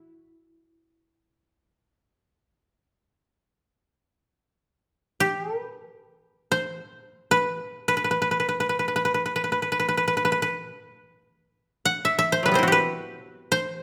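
Austere and still, this short passage of Japanese traditional chamber music unfolds in free time, cut from a longer piece. A solo koto carries the whole performance from 0.0 to 13.8 seconds, moving between F#3 and F#5 in the E hirajoshi scale, tuned to A4 = 439 Hz. The instrument is played with fingerpicks and sits up front, its woody, dry tone close and warm. A moderate recital hall reverb of about 1.4 seconds surrounds the plucked notes with a measured sense of space. The material falls into two statements of the same section, the second beginning at 4.2 seconds and lasting until the close of the recording.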